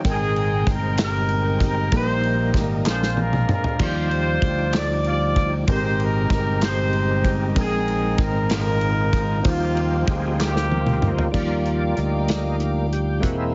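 Slow gospel in 6/8 at 64 BPM in Eb major, jubilant and hopeful, where a vintage horn section carries the melody up front over punchy fingered electric bass, a natural country drum kit with dark cymbals and fills at 2.9 and 10.4 seconds, a mellow tine electric piano, gritty overdriven tonewheel organ with slow rotary speaker and key click, and hollow, distant group handclaps, before the organ takes a solo at 11.3 seconds as a reedy chamber string section enters in the background, all heard through a heavily compressed, radio-like sound with a small room ambience.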